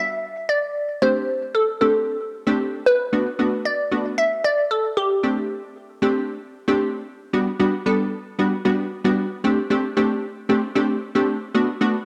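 Pop with a carefree, euphoric mood at 114 BPM in G major, this cut from a longer piece opens with a crystalline, nasal wavetable pluck carrying the melody, treated with chorus, cassette tape and analog delay, until 6.8 s. Beneath it, a crisp, detuned wavetable chord stab with cassette tape coloring plays up front through 12.0 s over Gmaj7, D7sus4 and Bm7 changes. A build-up begins at 7.3 s, and a wet spring reverb and high-pass filtered home-cassette sound give the piece a lo-fi glow.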